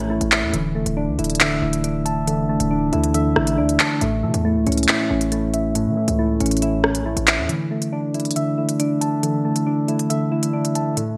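A mellow tine electric piano opens the recording with clean, direct arpeggios, sitting up front over soft, round synth keys that carry the chords through a gentle chorus and a low-pass filter. This is a dark, menacing drill cut at 138 BPM in a half-time feel, moving between A and Dsus2 in a brief slice of a longer piece. A drill drum kit arrives at 0.2 seconds with crisp hats, handclaps and rim clicks, its electronic, tape-tinged hits treated with gated reverb. Beneath it, a hard-hitting 808-style bass lands punchy and heavy, a sine tone with a noise layer and fast, decaying notes, until it drops out at 7.5 seconds, leaving the keys, piano and drums to close the final stretch on Dsus2. The electric piano's delay and the light digital ambience give the whole a bright 1980s-style production sheen.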